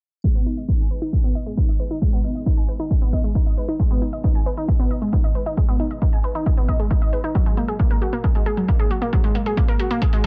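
Driving and soaring, this is a short uplifting trance excerpt cut from a longer piece, moving at 135 BPM in a straight 4/4 in G# minor, tuned to A4 = 445 Hz. A punchy, layered electronic kick drum sits up front from 0.2 to 10.3 seconds, re-recorded in a small room. Further back, an analog, tape-warm electronic hi-hat shares the same span, its level pumping with the sidechain. Carrying the arpeggios between F#3 and G#5 is a bright, detuned unison pluck built from sawtooth, sine and triangle layers with a sub octave, a noise layer and ring modulation, its fast attack decaying under vintage 12-bit sampler grit, tape echo and sidechain pumping. A filter sweep runs across the pluck and the whole track throughout, and the dense, heavily limited modern master is low-pass filtered, with little reverb.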